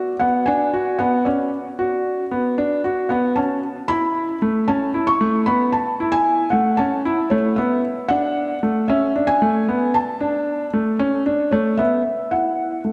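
Soaked in a long plate reverb for a dreamy haze, this hopeful, tender piece of electronica at 114 BPM pairs a felt-muted upright piano, carrying a soft, mellow, vintage melody through lush chorus and analog delay, with a concert grand piano playing an intimate, deep-bassed riff through a low-pass filter and analog delay, both up front with audible action noise, as the harmony moves from Bmadd9 to A to D5 before the chords fall away at 12.1 seconds.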